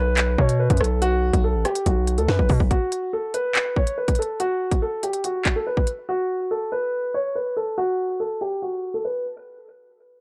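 A half-time drill groove at 142 BPM in 4/4 drives this cold, menacing hip hop clip, cut from a longer piece, with a drum kit of hard-clipped kick, sharp snare, crisp hats, handclaps and rim clicks that plays from 0.2 s to 6.0 s and drops a fill just before the bass stops at 2.7 s. A heavy, saturated 808-style bass with a noise layer and a fast attack that then decays growls under a B5 chord, while a dark, mellow grand piano carries the melody through tape echo and a low-pass filter, its filter sweeping from 2.7 s as the harmony falls away. The sound is dry and gritty, with the drums and bass sitting up front.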